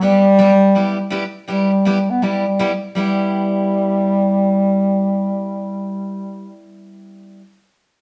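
A breathy bass clarinet carries the melody up front in a jazz-inflected solo style, its lines colored by a light vibrato and finishing at 6.7 seconds. Behind it, a bright, full-bodied picked steel-string acoustic guitar with fresh strings plays the accompaniment, opening on a G6 chord and ringing on until 7.4 seconds. This cheerful, swinging country fragment, cut from a longer piece, sits in a wet studio reverb.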